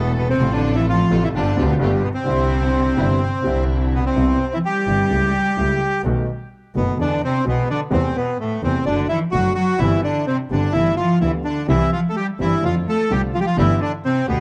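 Passionate and elegant, this tango moves at 128 BPM in 4/4 with a rubato feel, set in C major and heard as a short cut from a longer piece. A bright, reedy bandoneon carries the melody up front, its line touched by tape echo, while a bowed cello played by one player sings a second line with vibrato, portamento and an expressive, somewhat nasal and boxy tone. Beneath them, a baby grand piano supplies natural-sounding accompaniment, and a single bowed double bass with a gut-string, period-style character and light vibrato anchors the low end. A muted string section, con sordino and veiled with a smooth top, adds stabs from the background, playing from the start until 4.1 seconds and returning at 11.7 seconds. The harmony drifts through colorful turns such as A7/C#, B7 and E before settling back toward C, F6 and Gadd9, all wrapped in light reverb and a dark production.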